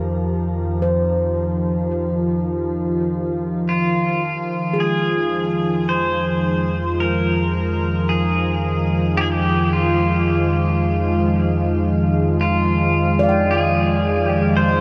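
A slow, straight pulse in four underpins this serene, melancholic ambient piece, which is cut from a longer work. A vintage, detuned analog pad sustains soft-edged chords up front, its lush chorus and shimmer reverb lending a gently warbling glow, while a deep, ominous drone rumbles beneath with a dark, nasal ring-modulated tone. A ringing stainless-steel handpan weaves meditative arpeggios through the haze, trailed by shimmer and tape echo. At 3.7 seconds, as the harmony moves from Eb/F to Fm7, a bright, twangy pedal steel guitar enters with a clean, compressed melody played with slide and volume swells, also carried on shimmer and tape echo. The whole piece floats in a huge, wet ambient space with a long 7.3-second reverb tail.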